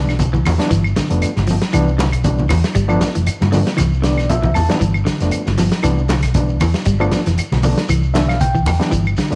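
Afrobeat in a joyful, funky swung 4/4, cut from a longer piece, where a barky, gritty reed electric piano with fast tremolo comps over Cmaj7 and G7 and adds fills at 3.8 and 7.9 seconds, a clean picked guitar arpeggiates in the background, a dark, round hollow-body bass sits up front, a muffled lo-fi vintage kit with a tight kick plays a fill at 3.8 seconds, and bright, saturated low-tuned congas, woody claves and a grainy shekere fill out the percussion in a moderate echo-chamber reverb.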